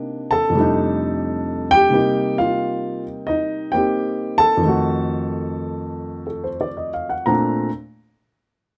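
Close, detailed miking and light reverb frame an intimate grand piano, its action noise audible up front, in this relaxed solo jazz excerpt from a longer piece, where the swung, rubato playing moves from Cm9 and F13 through Cm7 and F7b9 before settling on Bbmaj9 as the piano rings out at 7.7 seconds.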